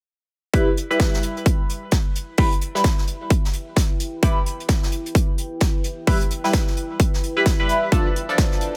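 A punchy, overdriven electronic kick and a nasal, band-passed sawtooth chord stab, soaked in phaser, chorus, delay and sidechain pumping, open this gritty, swaggering bass house fragment with a swung sixteenth-note feel, while a softer jazz brush kit adds a small-room snare and pumping hi-hats underneath. At 2.3 seconds a deep, detuned ambient pad with chorus and its own reverb enters on a gradual fade-in, sitting low in the mix and pumping along with the sidechain. The mix is otherwise dry, and the harmony holds on E minor before shifting to D minor at 7.9 seconds.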